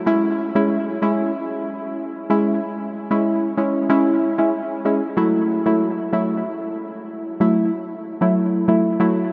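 A deep, mellow chord stab opens the recording at 0.1 seconds and plays alone throughout this short dancehall fragment, cut from a longer piece, in F# minor at 94 BPM in a straight 4/4. Its soft, evolving tone blends triangle, sawtooth and sine character with a filter sweep, a fast attack and a decaying tail, and it sits up front, colored by chorus and tape echo. The harmony rests on C#m before moving to F#m7 at 5.2 seconds, where a second section begins and carries through to 9.3 seconds. A huge ambient reverb with a long 7.9-second decay soaks the whole mix, giving it a dreamy, drifting space. The mood is bouncy yet sultry, with the stab's rounded depth floating inside the wash.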